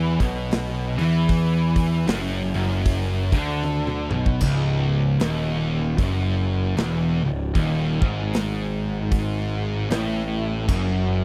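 Dry and close in a 1970s studio style, this sludgy, hypnotic stoner and doom metal passage, cut from a longer piece, rolls at 77 BPM in C# minor with a swung 4/4 feel. Two distorted fuzz guitars, one warm and one dark in the background, stack their riff with a double-tracked, overdriven guitar that has a bright edge, while a growly fuzz bass sits up front. A big-room acoustic kit with a punchy kick enters at 0.2 s and plays a fill just before the riff settles onto C#m at 4.4 s.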